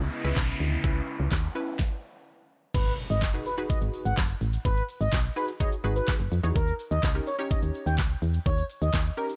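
Opening on a funky, filter-plucked polysynth comp, a soft, mellow supersaw and a punchy, round FM bass, all sidechain-pumped, with a noise sweep over knocking electronic drums, this confident, driving dance-pop excerpt in G# minor at 126 BPM hits a stop at 1.8 seconds, then drops at 2.7 seconds with an impact as a smooth, expressive sawtooth lead with chorus, vibrato and tape echo carries the melody over crisp hats, a fat snare, handclaps, shaker and a very quiet, jingly tambourine.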